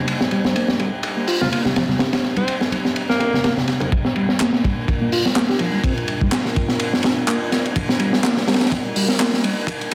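A dark, detuned analog pad holds sustained G minor chords under chorus, phaser and sidechain pumping as a crunchy, up-front breakbeat kit with a tight kick, high-tuned snare and dark, rolled-off cymbals drives this raw, swaggering breakbeat cut at 125 BPM with a light swing, joined in the background by bright bongos and congas until 3.9 seconds. A reedy electric piano riff with fast tremolo, overdrive and digital delay runs throughout, while a punchy alto saxophone with vibrato and an old-record tint sings a brief melody from 1.4 to 3.6 seconds. From 3.9 seconds the harmony shifts to Gm7 and a filter sweep on the electric piano builds tension, with layered, tape-tinged electronic handclaps entering at 4.4 seconds over a small, lightly reverberant room.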